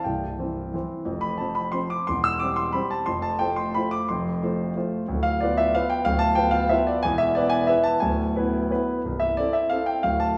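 A solo concert grand piano opens at once on a C major chord, playing a classical waltz in 3/4 at 180 BPM with uneven, rubato beats that give it a bittersweet, nostalgic air. The instrument sounds warm and open, sitting up front, with a deep bass that reaches down to C1 while its upper range extends to E6. The harmony moves through F and C/E before settling into A minor from 5.1 s, passing through Bdim/D, E and E7/D on the way to Am/C at 9.0 s. A wet recital hall reverb with a 1.6-second decay surrounds the playing, giving the feel of a church or concert hall. This 10.4-second passage is cut from a longer piece.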